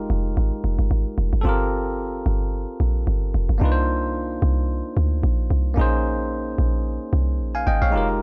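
The recording is dry and gritty, with the grainy character of cassette tape and very little reverb around the two instruments. It is a short amapiano fragment at 111 BPM in 4/4, with a gentle swing on the sixteenth notes that gives it a late-night, hypnotic feel. Up front, a deep log drum bass carries the low end with a round, percussive tone, a fast attack and a dark decay, its FM body topped with a noise layer. Beside it, a bell-like tine electric piano plays the accompaniment with a bright, clean and direct sound. Both parts run together through the whole 8.2 seconds, moving through a progression of minor eleventh chords: Fm11, Gm11, Cm11 and Bbm11.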